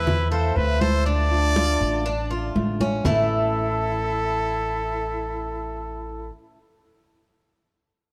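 Cuban son in a guajira vein at 120 BPM in a straight 4/4, this short, sultry and nostalgic fragment is cut from a longer piece and moves from A minor through D minor to A major at 3.1 seconds. A clear, close-miked trumpet carries the melody with vibrato up front, a breathy, reedy concert flute traces a second line in the background, and a metallic, double-strung tres plays mellow arpeggios over a boxy, fingerpicked ladder-braced guitar with old strings. A thumpy gut-string upright bass sits up front, ringing hard-hand congas play until 3.2 seconds, and a moderate plate reverb places the ensemble further back in the room.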